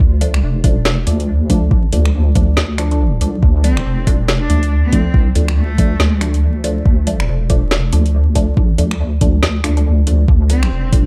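A swung, half-time groove in deep dubstep drives this brooding, meditative excerpt, with an overdriven, knocking electronic kick up front and a garage kit of woody snare, metallic hats and finger snaps, both touched with studio reverb. The kick drops out briefly at 9.9 seconds. Beneath them sits a deep, soft wobble bass with chorus, while a muted, filtered dub chord stab decays through phaser and dub echo, and a distant bowed cello, expressive with vibrato and portamento, surfaces from 3.6 to 6.2 seconds and again briefly near 10.5 seconds in a dark production dusted with vinyl crackle.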